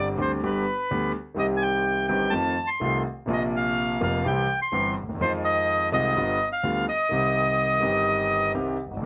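A reedy, bright bandoneon sits close and up front, carrying the melody between B4 and C6 over this dramatic, sultry tango in C minor, moving in a rubato 4/4 at 125 BPM. A warm concert grand piano accompanies from deep bass up through the middle register, intimate and polished with audible action noise and long sustain, as the harmony passes through G, F7, Bbsus2 and G7 before settling on C minor. Moderate studio reverb frames this short excerpt cut from a longer piece, with the bandoneon falling silent at 8.5 seconds and the piano ringing on to 9.1 seconds.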